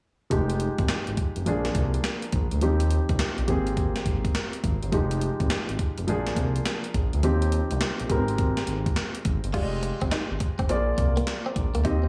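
A punchy 80s-style digital drum machine drives this short new jack swing cut, its thumpy kick, handclaps, hi-hat and crash sitting up front while the snare snaps through a gated reverb with a tape-tinged edge. Underneath, a smooth synth bass built from detuned sawtooth and square waves slides between notes with portamento, its fast attack and sustained tone giving the groove a confident, bouncy lift. A warm grand piano plays through the lush chord cycle of Fm9, Bb7, Eb69 and Abmaj9 across the swung sixteenth-note feel, keeping the R&B harmony rich. At 9.5 seconds a clean, direct-recorded electric guitar enters with a compressed, picked riff coloured by analog chorus, marking a fresh section as the chords return to Fm9 and Bb7. The mix is dry, with only a small-room ambience, and the fragment is taken from a longer piece.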